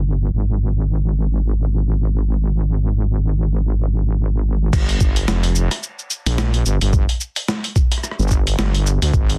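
Swaggering and funky, this glitch hop excerpt at 109 BPM in G phrygian opens with a heavy, saturated wobble bass alone, then at 4.7 seconds the drop brings in a gritty, pitched-down boom bap sampler-style kit of crash, hi-hat, rim click, shaker and snare alongside a thumpy electronic kick, all up front in a dry, dense and heavily limited mix with a swung sixteenth-note feel.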